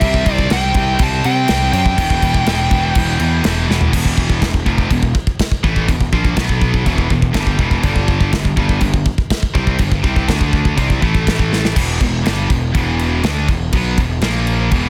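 A straight, driving 4/4 groove anchors this aggressive, dark heavy metal excerpt, carried by an up-front, polished, airy studio drum kit with a tight kick, medium-tuned snare, toms and bright crash cymbals. A dark, high-gain lead guitar opens with a short melody that stops at 3.6 seconds, just before a drum fill at 3.7 seconds ushers in a new section. Beneath it, two picked electric guitars grind out the riff in the background, both bright and distorted, one of them scooped, while a growly, fuzz-laden picked bass sits up front with an overdriven, direct-and-amped bite. The harmony moves from C to Em, then through power chords on E, B, G, D, C and A before returning to Em, with another drum fill at 11.5 seconds leading into the closing stretch. The mix is dry and dense, with a heavily limited modern master, and the passage is cut from a longer piece.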